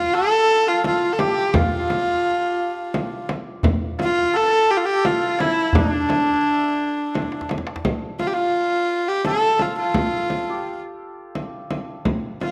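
Dark, moderately reverberant recital-hall sound frames this melancholic, soulful Persian modal ensemble piece at 86 BPM in 3/4, where an up-front, nasal, earthy kamancheh carries the melody with light vibrato, portamento and an airy bow over a shimmering, ringing hammered santur second line, joined by a deep, saturated frame drum and a tight tombak, with a drum fill at 7.1 s before the tombak drops out at 7.8 s as the piece moves into a new section.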